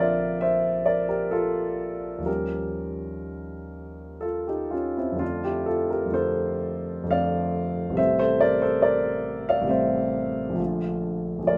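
A grand piano plays alone, close and intimate, with audible action noise and long sustain ringing through a light reverb in this luminous, serene excerpt of impressionist classical music. In a rubato triple metre, the rich ninth and added-tone harmonies drift from Bbadd9 through Eb9 to F6 and settle on Bbmaj7 near 10.6 seconds, spanning from the deep bass up into the upper middle register. The natural, up-front sound keeps the mood quiet and reflective throughout.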